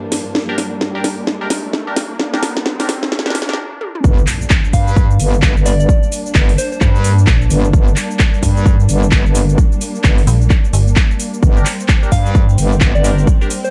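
Bass house at 130 BPM in G minor, aggressive and gritty, where a short build-up of drum fills, a background riser, veiled muted strings and a nasal, phased chord stab breaks off at 3.6 seconds before the drop at 4.0 seconds unleashes an overdriven, punchy kick and a saturated, chorused wobble bass up front, with cracking snare, metallic hats, a soft chorused bell melody and brief stabs of dark FM bass over the pumping strings.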